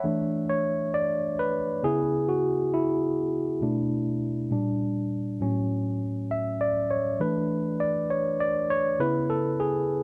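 R&B excerpt at 67 BPM with a 16th-note swing, introspective and soulful, featuring a solo tine electric piano, worn, clean and slightly out of tune, heard up front through its built-in speakers, moving through chords such as E7sus4, C#m7, Bm7, A#6 and A6, set in light digital reverb with a dark production.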